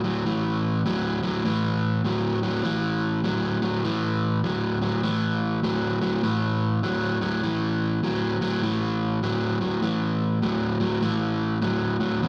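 Blues at 100 BPM in 4/4 with a swung eighth-note feel, soulful and swaggering, tuned slightly below standard pitch at A4 = 439 Hz. A lone crunchy, overdriven electric guitar plays throughout, picked and up front in a low register from E2 to F#3, opening on an A5 chord, with a warm tone thickened by slapback and tape echo. The sound is that of a live club gig heard through the venue's PA, with light club reverb, in this roughly 12-second cut from a longer performance that shifts into a new section at 2.6 seconds.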